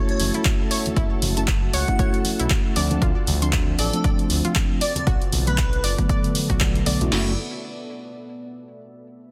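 A dark, detuned ambient pad, round analog pluck arpeggios with delay, mellow tine electric piano stabs and a silky, very quiet string machine open this moody deep house excerpt in F# minor at 117 BPM with swung 16ths, cycling through F#m7, Dm7 and Bm7 with sidechain pumping in the pad, pluck, piano and bass, joined at 0.1 s by an airy, dreamy lead melody with vibrato and digital delay and tape-warm drum-machine handclaps and hi-hat, then at 0.2 s by a smooth, saturated synth bass and soft-handed, low-tuned congas in the background, before an up-front punchy kick, snare and crash land at 0.5 s in a dense, heavily limited mix with light reverb.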